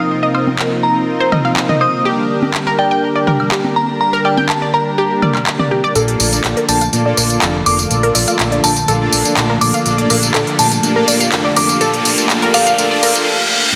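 A big-room dance drum kit with crisp hats, handclaps and tambourine drives a straight progressive house groove, with electronic woodblock, congas and toms entering just before it and dropping out at 5.7 seconds. Over it, a glassy FM synth bell carries an uplifting, hopeful melody with chorus, tremolo and tape echo, while a smooth detuned analog pad holds sustained chords under filter sweeps, a mellow supersaw plays delayed stabs, and a round, warbling analog pluck spins arpeggios. From 6.0 seconds a fat, saturated analog bass enters as swells and a riser build beneath in the background, ending on a reverse cymbal, all inside a wet digital room reverb and a dense, heavily limited master.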